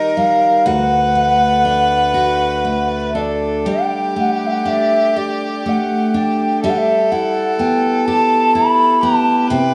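Nostalgic and pastoral, this short excerpt from a Celtic slow air drifts at about 41 BPM in a rubato 6/8 with uneven beats. A reedy wooden baroque flute carries the melody with vibrato and tongued notes, while a smooth, nasal fiddle plays a lightly vibrato second line beneath it. Up front, a bright, full-bodied steel-string acoustic guitar picks the accompaniment through chords moving from Eb to D, Gsus2 and Em/G, all set in a moderate concert hall reverb.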